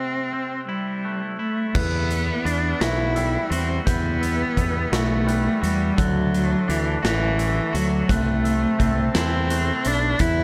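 Post-rock in 6/8, brooding and cinematic: a clear, bowed cello with vibrato carries the melody up front over soft glockenspiel and twangy electric guitar arpeggios, each touched with analog delay, until a big rock drum kit with bright cymbals and a punchy kick and a very quiet, reedy accordion holding chords enter at 1.7 seconds, joined at 1.8 seconds by a growling, overdriven fingered bass, in a dark, dry production cut from a longer piece.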